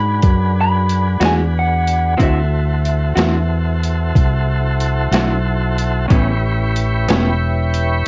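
A slow 12/8 blues at 61 BPM, this soulful, rollicking excerpt rests on pitched-down, gritty sampler-style drums with a thumpy kick and high-tuned snare, overdriven and up front beside a dark, round fingered electric bass. Over E9, D9 and A9 chords, a slightly broken-up electric guitar through a small old amp carries the melody with a lo-fi cassette tint, while a tonewheel organ holds smooth sustained chords through a slow rotary speaker. A second picked, compressed guitar adds tremolo accompaniment from 1.2 to 7.3 seconds, and the whole recording has a homespun cassette sound with light reverb and dulled highs.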